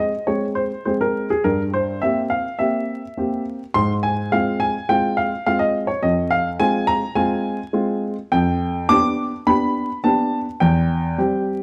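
Restless and serious, this short excerpt from a classical-period piano sonatina in F minor moves at 105 BPM in 4/4 with a rubato feel, played solo by an intimate, up-front baby grand spanning E2 to D6, its short sustain and audible action noise caught by close, detailed microphones under light reverb and a vinyl crackle, as the harmony passes from a rootless Fm through C7/G and G7/F before settling on C/E at 10.6 seconds.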